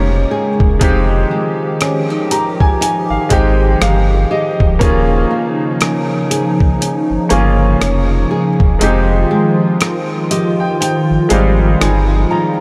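A deep, full sub bass with an octave layer sits up front in this slow, moody contemporary R&B excerpt in F minor, its sine-and-triangle tone sustaining low beneath a 60 BPM groove in 4/4 with a 16th-note swing. A baby grand piano with a natural, short-sustaining sound and lush chorus carries the accompaniment, adding fills from 1.8 to 4.8 seconds and again from 9.8 seconds, while a hollow, flute-like pad with detuned square and triangle colour and slow, mellow swells of ensemble chorus holds sustained chords underneath. A dark, fingerpicked flamenco guitar plays acoustic arpeggios a little further back, touched with subtle chorus and a diffuse ambient delay. The dusty, sampler-style drum kit enters at 0.6 seconds with hi-hat, rim click and a thumpy kick, its gritty, compressed, tape-warm character pushed forward, and the kick drops out at 8.8 seconds. The harmony moves between Eb7sus4 and Fm9, and the whole mix is soaked in a huge, dreamy reverb that deepens the longing mood.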